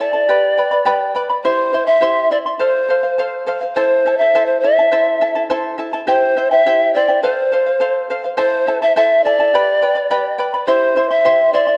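Wistful yet festive, this Andean folk passage in a straight 2/4 is taken from a longer piece and runs just under 12 seconds. A mellow, airy pan flute carries the melody from start to finish, its wooden tone softened by a gentle attack, rolled-off highs and a touch of vibrato as it moves between C5 and E5. Beneath it, an acoustic charango provides fingerpicked accompaniment throughout, its double strings, some octave-doubled, giving a shimmering ring across a span from E4 up to C6. Both instruments sit up front, the flute somewhat louder, while the harmony moves through G, C, F and A minor before the same phrase returns at 6.1 s and closes on C. A moderate scoring-stage reverb and a dark, warm production lend the pair a rounded, intimate finish.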